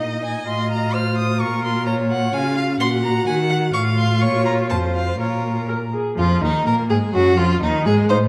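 Stormy and restless, this brief excerpt from a quick classical-period movement for string quartet runs at 126 BPM in 2/4 and Bb minor, its pulse pushed and pulled by a rubato feel. The first violin carries the melody across a range from Eb4 to F6 with a smooth, even tone and light vibrato, while the second violin adds a focused second line beneath it. The viola supplies rich, expressive accompaniment, its vibrato and portamento sounding somewhat distant, and the cello holds the bass from Eb2 to Eb3, clear and up front. The harmony moves through chords such as F7/A, Bbm, Db, Gb/Bb and Ebm before the passage restarts its opening material at 6.2 seconds and closes on Ebmadd9. A recital hall reverb of 1.3 seconds surrounds the quartet, and the production leans dark.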